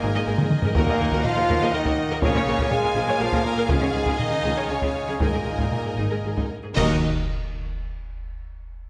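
The music moves in a steady, straight triple metre, a short excerpt cut from a longer epic, heroic orchestral film score. Distant taiko drums struck with hard sticks drive it from 0.4 seconds, opening with a brief fill, while a lush bowed violin section with smooth vibrato carries the melody over a focused second violin line and a background viola section. Beneath them, mellow French horns, bright, tight trombones and a roomy woodwind section hold sustained chords, and the cellos, expressive with portamento, join a clear, distant double bass section on the bass line. The harmony circles through Absus2, Ebm, Bbm7 and Db before returning to Ebm at 6.8 seconds, where the full band lands an accent with up-front, bright clash cymbals and concert bass drum alongside round, soft-mallet timpani. A wet recital hall reverb gives the whole ensemble a grand, spacious sound.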